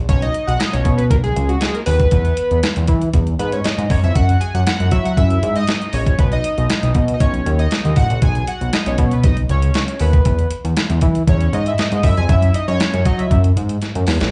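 Danceable and feel-good, this early-eighties boogie funk excerpt rides a fat, nasal, detuned analog bass with saturated sawtooth bite up front, a glossy, full-bodied polysynth sustaining through its solo with chorus and slapback echo, and a crisp, thumpy 8-bit drum machine with overdrive and a medium-tuned snare that closes on a drum fill at 13.8 seconds, all heard as a live gig through the venue's PA with club ambience and a dulled top end.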